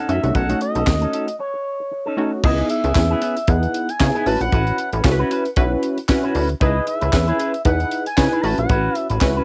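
A plucky analog bass sits up front in this short cut from an early-eighties boogie funk track, its punchy, wave-folded sawtooth tone decaying quickly under a danceable, swung groove. A tight funk drum kit matches it in presence, with a high-tuned snare, bright cymbals, handclaps and a cassette-tape grit on the dry acoustic sound, and a brief break arrives at 1.4 seconds before the progression settles into C#m7 and A69. A dark, detuned polysynth comp fills the middle with full-bodied, filter-plucked chords, while an electric guitar with an envelope filter picks a clean, twangy riff. Over the top, an expressive synth lead sings a smooth, mellow melody with vibrato and chorus, also carrying a tape-worn colour. A jingly tambourine enters at 0.9 seconds, sitting close and dry in the background of a homemade cassette recording with little reverb.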